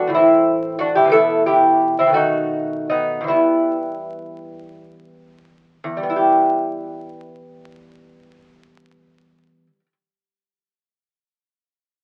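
Classical baroque-style dance for solo lute in E minor and 6/8, solemn and grave, moving with rubato at a slow 44-64 BPM in dotted quarters and slowing down from 0.2 to 5.8 seconds as it passes through Am, Em/B and B7 to settle on Em. The fingerpicked lute, with gut and double strings, some of them octave-doubled, sounds delicate and up front, and it plays alone for the full 10 seconds of this short cut from a longer piece. A modest small-room reverb surrounds it, and the sound of a very old 78 rpm record adds a layer of vinyl crackle.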